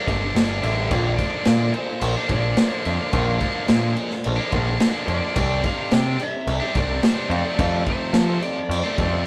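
Cathartic and angsty, this short cut of quiet-loud alternative rock drives at 108 BPM in a straight 4/4, cycling through Gm, Bb, Csus2 and F6 in a rough rehearsal-room recording with light reverb. Two bright, picked distorted guitars grind out the riff, one high-gain and heavy, the other compressed and set back, while a growling overdriven bass sits up front beside a raw garage kit with a boomy kick, dark cymbals and a gritty, saturated, pumping small-room sound. From 0.6 seconds a fuzz lead guitar with a warm, compressed tone carries a high melody from the background.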